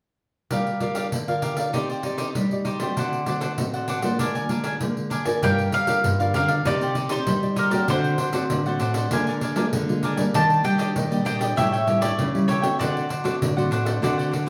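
A straight 4/4 samba and choro groove at 98 BPM is set by a jingly, hard-handed pandeiro with a compressed, saturated edge, alongside crisp picked cavaquinho and full-bodied, fingerpicked nylon-string guitar moving through G minor changes in a nostalgic, lively mood. At 5.4 seconds a woody, double-strung mandolin takes the melody while a second nylon-string guitar adds a thumb-plucked classical bass line, and the harmony opens out to Ebmaj7 and A7 before settling on D7. The band sounds live in one room inside a wet, large studio reverb, in a passage cut from a longer piece.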